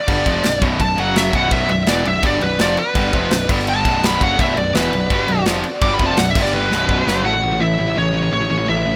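A high-gain lead guitar, bright and up front, solos over a dark, relentless heavy metal excerpt in B minor at 168 BPM, driven by three picked distorted rhythm guitars, a growly fuzz-overdriven bass and a punchy acoustic drum kit whose fill at 6.5 seconds closes the drums' run at 7.2 seconds, while a very quiet, soft-attack chamber string section enters at 1.5 seconds and a second, darker lead guitar line slips in at 7.3 seconds in a rough home-demo mix with little reverb.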